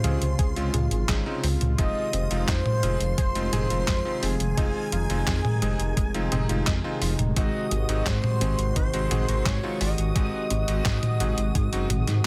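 A straight 4/4 pulse at 86 BPM comes from a tape-warm, up-front 8-bit drum machine of handclaps, hi-hat, medium-tuned snare and toms, joined at 0.4 s by a thumpy electronic kick, while a deep, rumbling detuned saw bass pumps against the sidechain beneath this nocturnal, nostalgic synthwave cut from a longer piece. A smooth, expressive synth lead with vibrato, chorus and delay carries the melody over a soft, warbling analog pad that also pumps, with a shimmering string-machine violin line high in the background, a very quiet, round analog pluck arpeggiating and a bright, cutting electric grand piano adding delayed stabs. The chords move from Dbmaj7 to Fm7 and then Ab7 at 7.4 s, all set in light reverb within a dense, heavily limited modern master.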